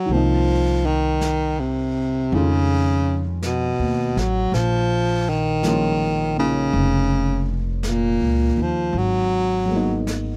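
A dry, close recording with a small-room feel and a 1970s studio character frames this brief, wistful jazz ballad cut from a longer piece, moving at a slow swing in 4/4. Up front, a breathy baritone saxophone carries the melody in its low register, its clear, close-miked tone shaded with vibrato. Behind it, a dark baby grand piano comps with a mellow, short-sustained sound, the soft noise of its action audible. A growly, woody upright bass played pizzicato anchors the bottom, while a jazz kit of brushed snare and hi-hat sits in the background. The harmony drifts from Cm7 through F7alt and Bbm7 before settling on Abm9 at 8.9 seconds, lending the passage an intimate, searching quality.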